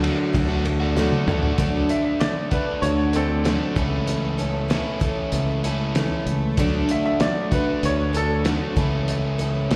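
Heard as a live gig through the venue's PA, this short cut from a longer folk rock and heartland rock piece carries light recital-hall reverb and a nostalgic, jangly mood at 96 BPM in a straight 4/4. A shimmering, octave-doubled picked twelve-string acoustic guitar plays the accompaniment with audible finger squeak, plate reverb and slapback echo. Beside it, a double-tracked, compressed overdriven electric guitar plays a riff with its own slapback echo. An up-front, direct fingered electric bass and a muffled, lo-fi drum kit with a fat snare, tight kick and dark cymbals anchor the groove beneath the harmony, which moves between D and A/C#. After a drum fill at 1.0 s, a brilliant, woody upright piano enters at 1.9 s for a solo of short-sustained notes, treated with tape echo, plate reverb and slapback echo.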